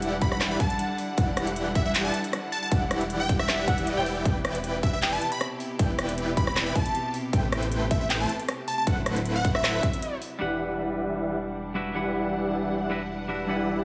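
Future bass at 156 BPM in E minor, this lush, emotional passage cut from a longer piece rides a half-time feel with a light swing on the sixteenths, moving through Em9, Cmaj7/E, Am9 and D13 before returning to Em9. The drop opens at once with huge, airy supersaw chords up front, a deep, saturated sub bass, distant symphonic strings with light vibrato, and a background unison pluck playing arpeggios, all pumping against the sidechain. A punchy, tape-warm kick re-recorded in a large room and a dubstep kit of handclaps, rim clicks and metallic hats drive the groove, while a catchy, full-bodied plucky lead carries the melody through a phaser and tape echo. The drums and lead drop away at a short break, and at 10.4 seconds a twangy, clean electric guitar takes over the accompaniment with dub echo as a filter sweep moves over the strings. A barely audible riser appears in the final moments, and the whole passage sits in light reverb.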